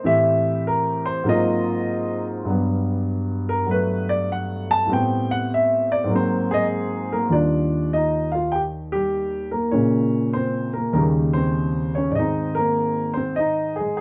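Sophisticated and swinging, this short solo jazz piece moves at 99 BPM in 4/4 with a swing feel on the eighth notes. A warm baby grand piano carries everything alone, sitting up front with a natural tone and long sustain as it ranges from Eb2 to A5. The opening passage drifts through rich extended chords, from Am7 and Ab13 to Gmaj9, before the harmony settles into Eb major at 7.3 seconds. From there the progression runs through Ebmaj9, Bbm9 and Eb7 on its way to Ab. A moderate small-room reverb gives the playing an intimate, live feel, and the recording is a fragment cut from a longer performance.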